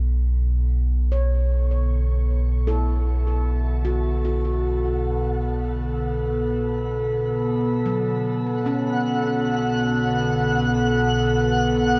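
Spacious and melancholic, this ambient passage, cut from a longer piece, rests on a single chord as a warbling, nostalgic tape-like pad with chorus fades in over a deep, ominous rumbling drone that fades out, while a mellow, ringing handpan enters at 1.1 seconds with soft arpeggios through delay, a twinkling, sparkling granular texture arrives high above at 8.7 seconds, and the whole mix sits in a dark, lingering shimmer reverb.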